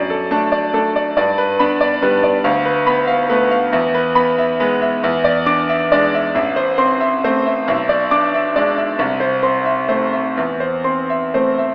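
Heard through a narrow AM-radio filter and from farther back in a wet, spacious scoring-stage reverb, this fragment of a classical piano waltz has a wistful, elegant air. A bright concert grand plays alone throughout, its brilliant treble and deep bass spanning A1 to D6, in a rubato 3/4 that drifts between 121 and 145 BPM. The harmony in A minor passes through G, a half-diminished chord and E7 before settling on A minor at 6.4 seconds, then moves through E7/B, Am/C and Am/E to close the passage.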